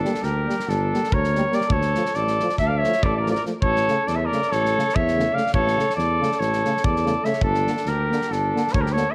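In a moderate recital-hall reverb, this bittersweet, restless Balkan brass band excerpt in 9/8 at 284 BPM in eighths, in G dorian sharp4, puts a clear, soft-attacked vintage flugelhorn melody up front over a distant mellow trumpet second line, a roomy clear trombone and lightly vibrato French horn in the background, a smooth-topped mellow tuba bass, and a loose acoustic indie drum kit with a medium-tuned snare and tight kick, moving from Gm through Dm and A back to Gm at 7.4 seconds.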